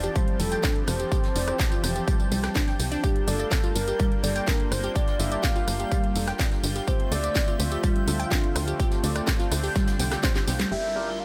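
A punchy electronic kick drives a straight 4/4 groove at 125 BPM, up front and starting at 0.2 s, while a house kit adds a cracking snare, metallic hats, rim clicks and tambourine, and a very quiet jazz brush kit with a high-tuned snare sits beneath it in a small room. This is bittersweet, dreamy progressive house in G dorian, moving through Fmaj7, Gm7 and Dm7, and this portion is cut from a longer piece. A tight, driving sequencer bass with a sawtooth bite and ring-modulated edge pumps under the sidechain, while a smooth analog pad holds sustained chords with a moving notch and long release. A glassy, crystalline wavetable pluck spins arpeggios through a filter sweep and tape echo, and a round, octave-layered synth lead carries the melody with vibrato and chorus. A reversed, granular texture swells in the background. The kick drops out at 10.3 s, and after a drum fill the two kits stop at 10.7 s as a downlifter falls and a brief, worn grand piano stab lands at 11.0 s, all inside a digital ambience.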